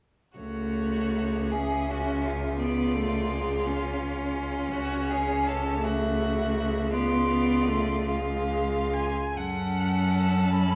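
At 0.4 s a string quartet enters together in a slow, yearning and melancholic romantic movement in F# minor, 6/8 at 45-56 BPM with rubato, where a soft-attacked first violin sings the melody with vibrato and portamento over a focused, smooth-topped second violin and viola, all three rich in tone, and an up-front, clear cello bass, as the harmony sways between F#m/C# and C#7b9 before settling on F#m at 9.4 s, all set in a reverberant recital hall with vinyl crackle in this fragment cut from a longer piece.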